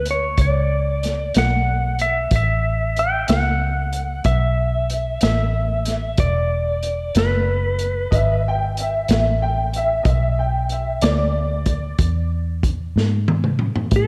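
A dark, clean lap steel guitar sings the melody with slide and volume swells in this laid-back, soulful slow blues at 62 BPM in 12/8, over a round, foam-muted electric bass and a lo-fi, muffled vintage drum kit with a punchy kick that plays a fill at 13.0 seconds, while a woody upright piano with audible action noise adds a chorused second line from 8.1 to 12.3 seconds, all in a dreamy mix soaked in hall reverb as the harmony moves from A to E7.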